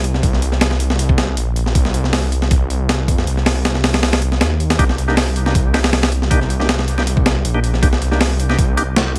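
A lightly swung, compressed sampler-style breakbeat with a thumpy kick, hi-hat and high-tuned snare drives this raw, nostalgic drum and bass and jungle excerpt over a single Cm7 chord, alongside a thick, menacing detuned saw bass with tube saturation that sits up front from the start, while a reedy tonewheel organ with key click, slow rotary speaker, vintage 12-bit sampler grit and dub echo adds stabs from 4.8 s to 8.8 s.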